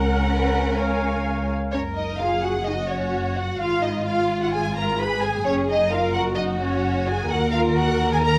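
A moderate reverb from a large studio room surrounds this brief, cheerful string-orchestra passage, cut from a longer classical-period movement in a quick, straight four. An up-front violin section carries the graceful melody with lush, expressive vibrato. Beneath it, a second violin section plays a rich, soft-attacked second line, while a dark, woody viola section sits distant in the blend with its accompaniment. The bass comes from a smooth, even double bass section up front, joined by a cello section in the background that adds portamento. Every section plays bowed from the opening to about 8.4 seconds, with a short opening phrase giving way at 1.7 seconds to a longer second passage. The harmony moves from F# over C# through C# and F# to G#m69, returns to F#, and closes on D#5.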